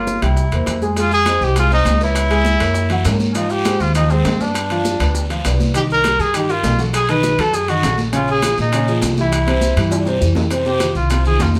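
A live band fills a large studio with moderate reverb in this sultry, driving Afro-Cuban jazz excerpt, cut from a longer piece. Up front, a mellow trumpet with a soft attack carries the melody from a roomy distance, over a woody, thumpy pizzicato upright bass on gut strings. An intimate baby grand piano plays the accompaniment with long sustain and audible action noise, moving through chords such as Fm7, Gb9 and Bbm11. In the background sit high-tuned congas ringing close and dry, metal-shell timbales, grainy maracas, and a raspy, distant guiro that enters at 1.0 seconds, while round, low-tuned bongos played with soft hands stay very quiet. A drum fill at 9.9 seconds leads into a trumpet solo at 10.5 seconds over an F5 chord as the clip closes.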